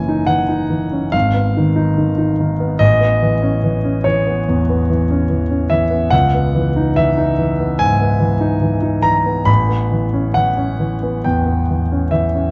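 Luminous and serene, this short excerpt of impressionist classical solo piano unfolds at 71 BPM in 4/4 with a rubato feel that lets the time breathe. A clear grand piano carries the whole passage alone, spanning from a deep F#1 up to B5, and sits up front with an intimate, natural tone in which the action noise of the instrument is audible. The harmony drifts through colorful, open chords, moving from F#sus2 to G#m, then Aadd9 and C#m9 before settling on A9 near 9.5 seconds. A moderate recital hall reverb surrounds the piano with a gentle halo, while the overall production leans dark. The piece is cut from a longer work, so these 12.5 seconds feel like a glimpse into a larger, reflective stretch of music.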